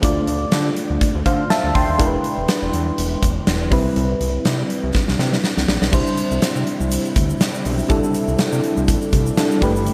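Bathed in a lush hall reverb, this bright 1980s-style digital production carries a moody, dramatic pop excerpt at 122 BPM with a light sixteenth-note swing, moving through Dm7, E7 and Cmaj7 to Cadd9. A huge arena drum kit with gated reverb, a punchy kick and a medium-tuned snare sits up front beside a warbling, vintage FM electric piano with tremolo, while a fat, saturated analog bass anchors the low end; a drum fill at 4.9 s leads into a new section. At 5.9 s a smooth, chorused analog pad enters behind them, joined by a grainy egg shaker in the background.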